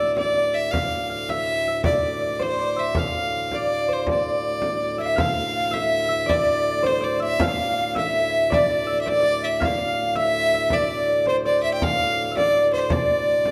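This medieval dance in D minor moves at 108 beats per minute in a straight 6/8, counted in dotted quarters, with an ancient, driving mood in a fragment cut from a longer piece. A single bowed fiddle carries the melody up front with a bright, earthy tone and light vibrato. A fingerpicked concert harp adds a ringing second line alongside it, and a pedal harmonium holds a low, reedy, dark drone that has a breathing quality. A deep frame drum enters at 0.2 seconds with a large, small-room sound. At 5.0 seconds a breathy tenor recorder joins in the background with a second line that is hollow and mellow, showing a soft attack, chiff and vibrato. A recital hall reverb with a 1.4-second decay surrounds the ensemble.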